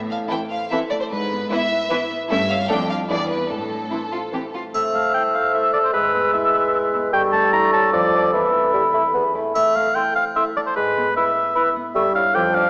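A playful, whimsical cinematic film cue in A minor at 150 BPM in 3/4, with a sneaky, quirky mood, cut from a longer piece. Over ringing, mellow harp arpeggios, rich bowed strings open the cue, with an up-front, focused violin melody supported by second violins, background violas and cellos on the bass. At 4.7 seconds the strings give way to a woodwind group: a punchy, up-front oboe, an airy, hollow flute, a dark, distant clarinet and a mellow bassoon, with a close triangle adding bright touches, all set in a wet scoring-stage reverb with a small-speaker sound.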